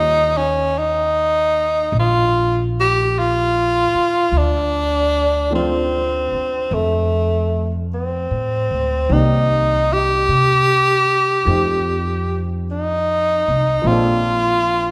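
Bathed in the wet reverb of a recital hall, this short excerpt from a slow, tender jazz ballad carries a swung, late-night hush. A breathy tenor saxophone sits up front with the melody, its light vibrato shading each phrase. Behind it, a baby grand piano offers intimate accompaniment from the background, its short sustain and audible action noise softly present, while a woody, growly upright bass plays pizzicato underneath from start to finish.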